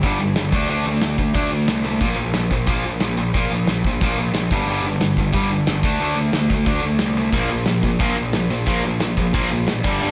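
Aggressive and raw, this punk rock excerpt drives at 180 BPM with a tight, bright distorted guitar riff up front over power chords on G, D and B-flat, backed by a growly fuzz-toned picked bass with overdrive. A loose indie drum kit with a tight kick, medium-tuned snare and hi-hat sits up front in a small, pumping room sound. At 7.3 seconds a second distorted electric guitar joins the riff from the background.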